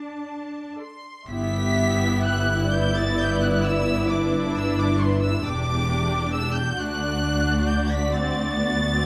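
In a rubato 12/8 pulse of about 40-46 BPM counted in dotted quarters, this slow, lyrical and serene romantic passage for string orchestra in G major, cut from a longer piece, opens with a smooth, vibrato-laden violin section singing the high melody over a lush cello bass, joined at 0.8 s by a warm second violin line and rich viola accompaniment and at 1.3 s by an expressive double bass section, all bowed and captured with close, detailed microphones in a moderate scoring-stage reverb.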